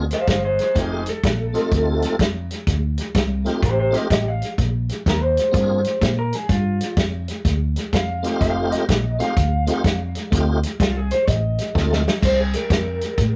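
A clean electric guitar solo runs through this laid-back, soulful electric blues shuffle, over a dark, slightly broken-up second guitar line from a small old amp, a round, punchy foam-muted bass and a dry, up-front soul drum kit with a tight kick. A full, lightly overdriven tonewheel organ with slow rotary speaker and chorus vibrato comps through Bb9 and F9 chords until 12.0 seconds, as a drum fill at 11.7 seconds leads to a closing C7. Light reverb gives this rough rehearsal-room recording, cut from a longer piece, its casual feel.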